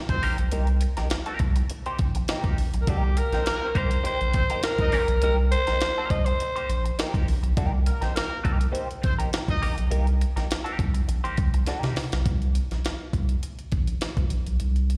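Funk at 102 BPM in C minor, sly and hypnotic, cut from a longer piece, where a gritty, pitched-up breakbeat sampler-style kit with a thumpy kick and high-tuned snare sits up front beside a deep, thick saturated sub bass, while a clean electric guitar with wah and slapback echo comps and a clear horn section with light vibrato plays a second line until 9.7 seconds, a raspy, growling alto saxophone carries the melody from 2.8 to 6.8 seconds, and a drum fill at 11.7 seconds leads into a closing C5 passage, all heard as a live gig through the venue's PA with recital-hall reverb.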